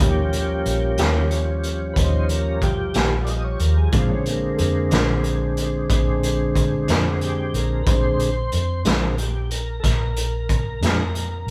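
A smooth tonewheel organ solo with chorus vibrato and slow rotary speaker leads this rollicking yet laid-back slow blues in 12/8 from the first moment, moving from Eb7 to Bb7 at 3.9 s over a gritty, punchy garage drum kit, a dark, round, foam-muted fingered bass and a mellow, clean, compressed electric guitar with tremolo that sits in the background until 11.0 s, the band captured live in one room with moderate large studio reverb.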